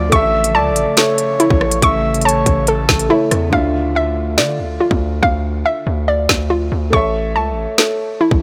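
Light, digital ambience surrounds this tense, ominous drill excerpt at 141 BPM in half-time D harmonic minor. Up front, a drum kit with a hard-clipped kick, woody snare, rim click and crisp hats sits beside a saturated, aggressive 808-style bass, while a hollow, bouncy square pluck plays detuned arpeggios through chorus and delay. A worn, boxy baby grand piano with audible action noise accompanies throughout, and a breathy, flute-like synth lead with vibrato and a glassy FM pad in the background fall away at 3.1 and 3.5 seconds as the chords move from A to Dmadd9 and back to A.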